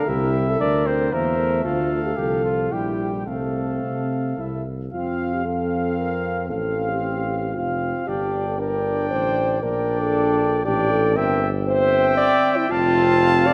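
Heard in a moderately reverberant concert hall, this stately, triumphant brass quintet passage in F major unfolds in a rubato 3/4 at 115 BPM, with a mellow, close-miked trumpet carrying the melody in light vibrato, a warm, distant and roomy flugelhorn on the second line, a dark French horn and a clear trombone, the latter sitting in the background, as accompaniment, and an up-front tuba with a smooth top anchoring the bass, as the harmony moves through C, Dm and Gm before settling on F at 12.7 seconds.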